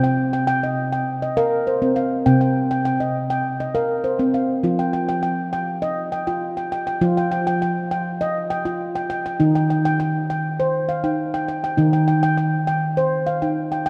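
A ringing handpan of nitrided steel opens on C minor, heard alone and up front with sharp finger strokes across a range from C3 to G5, in this gentle, meditative world excerpt at 101 BPM in a straight 4/4. The harmony moves to Fsus2 at 4.6 seconds and settles on E-flat at 9.4 seconds. A wet cathedral reverb with a 4.8-second decay gives the solo instrument a long, hallowed tail.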